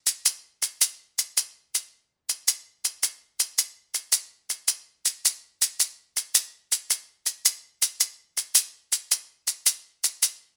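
The rhythm sits in a 12/8 metre at 108 BPM counted in dotted quarters, with a straight feel that gives this southern African traditional excerpt a steady, hypnotic pulse. A single set of maracas carries the whole recording, entering at 0.1 seconds and continuing to 10.4 seconds. Their sound is grainy and mellow, acoustic in character, and placed close, dry and up front in the mix. A light reverb colours the room around them, lending the piece a warm air. The music moves from an opening section into a second one at 2.3 seconds, and the passage is cut from a longer piece.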